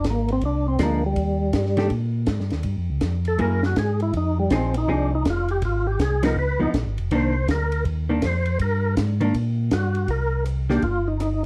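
A soulful, smoky soul jazz organ trio excerpt opens with a fat, key-clicking percussive tonewheel organ soloing over a round, dark organ bass line and a smooth, high-tuned-snare cocktail drum kit, both organs lightly overdriven through a slow rotary speaker and chorus vibrato, before a clean, compressed hollow-body jazz guitar adds swinging accompaniment from 0.8 to 10.8 seconds under light reverb and a faint mains hum.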